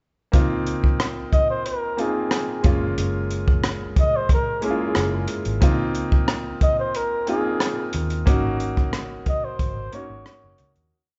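A live band shares one large studio room, heard through a moderate reverb and a rolled-off top end that keeps the sound soft and rounded. This is a short, complete piece of lush, romantic 1970s-style soul in a straight four, built on a single verse of rich major-seventh harmony that settles onto a suspended dominant chord at 8.3 seconds, where the fade-out begins. A compact cocktail drum kit sits up front with a dry, punchy kick, hi-hat and rim click in a smooth mid-tempo soul groove, alongside a dark, foam-muted electric bass that plays a round, melodic line dotted with muted ghost notes. A clear, intimate baby grand piano adds pushed chords in rootless voicings with grace notes, long sustain and audible action noise. From 1.3 seconds a mellow flugelhorn takes the solo up front, with a soft attack, vibrato and a smooth, tube-saturated top, shaping a jazz-style melody from song-like motifs.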